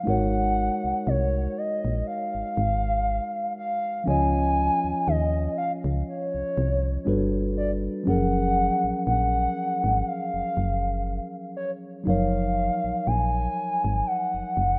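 A rough home demo mix with light reverb and audible lossy compression artefacts frames this smooth, dreamy contemporary R&B piece, cut from a longer work and carrying a gentle swung feel. A hollow, woody clarinet-like synth lead with chorus and vibrato carries the melody over a mellow, clean tine electric piano and a punchy, round FM bass that enters at 0.1 seconds. Lush extended chords such as Ab9sus4, Dbmaj7 and Gmaj9 give way to Gbmaj9 and Ebm9/Gb when a new section begins at 8.1 seconds.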